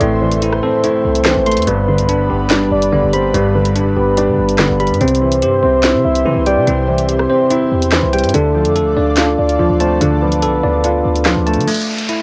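A cassette-toned home recording with light reverb carries this tense, dark drill cut from a longer piece, moving at 144 BPM in a half-time feel over Am, G, C and Dm. A mellow, vintage grand piano with short sustain and bell-like tine electric piano arpeggios, both softened by a low-pass filter, sit over a punchy, heavy 808-style bass and an electronic drill kit with a sharp snare, handclaps, rim clicks, crash and hats. A breathy, detuned pad lingers in the background with chorus, while a full, round octave-layered synth lead with vibrato and analog delay enters at 0.2 seconds, before a downlifter fills the break from 11.7 seconds.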